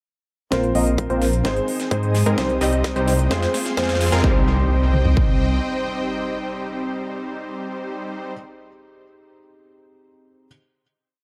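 A thick, menacing detuned saw bass drives this short, anthemic festival progressive house piece in C minor at 129 BPM, pumping under sidechain and following the chord rhythm through Bbsus2, Ab, Cm and Fm until 5.6 seconds. Meanwhile, a punchy big-room kit supplies a four-on-the-floor kick, toms, crisp hats and a huge snare through a build-up and drum fill. Up front, an airy supersaw stab plays filter-plucked dotted-rhythm chords with delay and a filter sweep, joined by a lush supersaw pad, dark baby grand arpeggios doubling the chords, and a soft felt-muted upright piano holding syncopated chords in the background, while very quiet risers and impacts lead into a final C minor chord at 4.2 seconds in a warm mix with light reverb.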